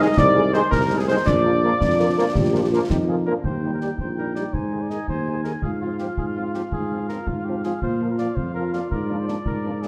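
This spirited, rousing military-style march for wind band opens mid-phrase in a straight 6/8 at 110 beats per minute. A mellow solo cornet carries the melody in a smooth, classical style with light vibrato, over a roomy, distant woodwind section playing a tight second line and a vintage-toned French horn section filling in the accompaniment. A hollow, wooden-sounding piccolo and a punchy, close-miked euphonium add further second lines in the background, while a very quiet trombone section holds bright sustained chords. Up front, a warm solo tuba anchors the bass, and concert snare, bass drum and dark-edged clash cymbals join at 0.2 seconds. The piccolo stops at 2.9 seconds, and by 3.4 seconds the euphonium and trombones have also dropped out as the music moves into a new section, with harmony passing from Eb through Ab and Fm/Ab to a Bb7/Ab close. A moderate scoring-stage reverb gives the band a spacious, ceremonial sound.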